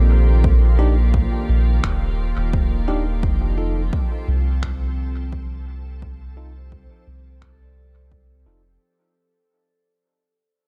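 A deep, round sub bass sits up front in this peaceful, spacious ambient dub excerpt, its soft tone given a touch of tube saturation. Above it, an organ-like pad holds sustained chords, detuned and bright, with ensemble chorus and its own reverb, moving from Ebmaj7 to F at 3.2 seconds. A punchy, layered electronic kick with overdrive joins at 0.4 seconds, and muffled, pitched-down finger snaps arrive at 1.8 seconds, overdriven and thrown into dub echo. A barky, bell-like tine electric piano adds clean stabs through a low-pass filter and dub echo, while a metallic vibraphone with fast motor vibrato rings out arpeggios in the background, swept by a filter and tape echo. The mix is dry yet echo-heavy, and the whole passage fades out as it goes.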